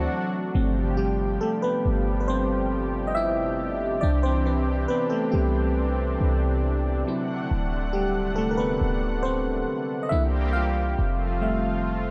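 A glassy FM electric piano with a bell-like attack takes the lead in this smooth, dreamy contemporary R&B excerpt in C major at 69 BPM, its chorused tone warbling over chords that move from D7 and G7sus4 through Cmaj9 to C7 and Fmaj7. Beneath it, a thick, detuned sawtooth pad holds sustained chords with a slow attack and long release, while a clean, boomy 808-style sine bass sits deep and up front. The whole mix is soaked in a moderate plate reverb that lends the short cut from a longer piece its hazy, floating quality.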